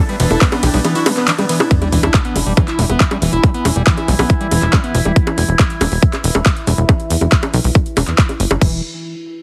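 This intense psychedelic trance excerpt opens on a drop: a huge, detuned supersaw melody pumps through phaser and delay for its first 1.6 seconds over an evolving, chorused drone and a squelchy, distorted acid bass riff with sampler grit. Almost at once, an overdriven dance kit with metallic hats, bongos, claps and cymbals joins, along with a funky plucked analog bass and a punchy, up-front kick. At 1.7 seconds a sub drop in the background marks an impact, and the acid bass stops at 5.1 seconds while the drone, kit, kick and plucky bass carry on, all under a light reverb and a heavily compressed, radio-like sound with lossy artefacts.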